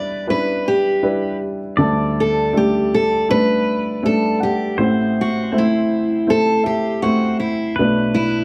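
Reflective and melancholic, this slow acoustic folk-pop ballad sets a picked steel-string acoustic guitar up front on the melody, its tone warm with audible finger squeak and a touch of plate reverb, over a boxy, short-sustained upright piano accompaniment moving through Em7, Dsus4, Am and Bm7. Behind them, a clean pedal steel guitar played with fingerpicks adds a compressed second line with slide and volume swells, while a felt-muted upright piano offers mellow, intimate arpeggios in the background until 7.6 seconds. The whole passage is heard from further back in a wet studio room, and it is cut from a longer piece.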